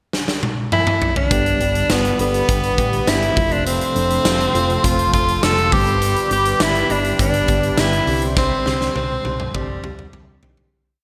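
A clear, forceful tenor saxophone carries a motif-based pop melody up front, with light vibrato and shimmer reverb and delay, in this romantic, glossy 1980s-style pop piece at 102 BPM in G mixolydian. A huge arena drum kit opens with a fill at 0.1 s. From 1.3 s it drives a big backbeat with a punchy kick, joined by a round, amped fingered electric bass playing driving eighth notes, a mellow FM electric piano with tremolo playing eighth-note chords, and a detuned sawtooth analog pad with chorus sustained in the background. The bright digital production sits in a wet plate reverb, and the piece fades out over a final drum fill from 8.4 s.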